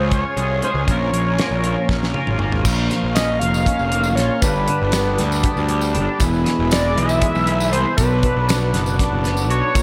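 Hypnotic and dark, this psychedelic rock passage in 7/8 sets a screaming, gritty synth lead with distortion, chorus and delay over buzzy overdriven combo organ chords and a twangy, double-tracked electric guitar riff run through a rotary speaker. Up front, a fuzzy overdriven picked bass and a dry, damped 70s drum kit with a fat snare and tight kick drive the groove, with a drum fill from 1.9 to 2.7 seconds leading into the next section, just as a jingly tambourine joins in the background at 2.6 seconds. The chords move from C# and Bbm7 through Gadd9 and E to Bm7, all set in a dreamy mix soaked in plate reverb.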